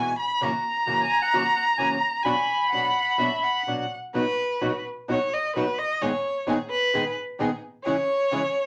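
A reedy, vintage bandoneon carries the melody up front from 0.9 to 3.6 seconds, its band-limited tone giving this short tango excerpt a sultry, passionate edge over a rubato feel. A single bowed violin plays the second line throughout, its soft attack, vibrato and portamento lending a smooth, expressive top, and it takes over as soloist from 4.1 seconds when the harmony brightens from minor to major. Beneath them, a small, dark nylon-string guitar is fingerpicked close at hand as accompaniment, settling through chords such as F#7 and Bm before moving to B, G#m and C#m. Further back, a rich symphonic string section adds biting, intense stabs with light vibrato. A wet small-room reverb gives the ensemble a close, intimate sense of space.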